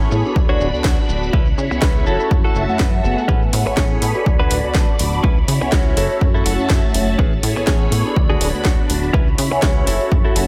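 Light digital ambience surrounds this funky, joyful filtered disco house clip, cut from a longer piece and built on swung 16ths, where a punchy, tape-warm electronic kick sits up front from 0.4 s and a layered house kit of sidechain-pumped hi-hat and cracking snare joins at 0.8 s, while very quiet, close and dry maracas shake throughout. A plucky, wave-folded analog bass, mellow detuned synth brass and a swirling string machine holding sustained chords all pump and sit behind a low-pass filter, the brass and strings also carrying chorus and phaser as they cycle through D6, C#m7, F#m7 and Amaj9. A bright, clean, direct-recorded electric guitar plays a compressed riff roughened by vintage 12-bit sampler grit, adding a fill at 6.2 s.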